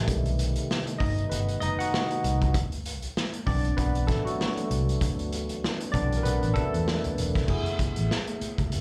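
Heard live through a club PA with light reverb, this short cut from a longer piece of lush 1970s-style soul moves at 97 BPM in 4/4 with a 16th-note swing, its mood smooth and bittersweet. A bright, barky tine electric piano sits up front through a combo amp, colored by analog chorus and slapback echo, and takes a solo from 0.0 to 7.5 seconds over B7b9b13 and D13 chords before the harmony shifts to F#m11. Beneath it, a round, foam-muted fingered electric bass and a vintage acoustic drum kit, with a punchy kick, medium-tuned snare, dark cymbals and hi-hat in a pumping small room, hold the groove.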